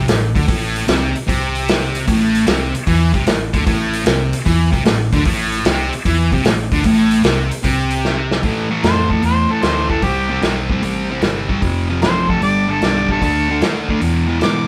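A swung 151 BPM groove in 4/4 drives this gritty, heavy blues rock and southern rock excerpt in A minor, where a double-tracked fuzz guitar riff sits up front over a round, foam-muted fingered bass and a dark, punchy vintage drum kit with a rolled-off top, all playing live in one room, until a drum fill at 8.0 seconds leads into a new section where an overdriven harmonica takes a mellow, lightly vibrato-tinged solo from 8.8 seconds over chords moving from A5 through C5, F, G and D5 to E.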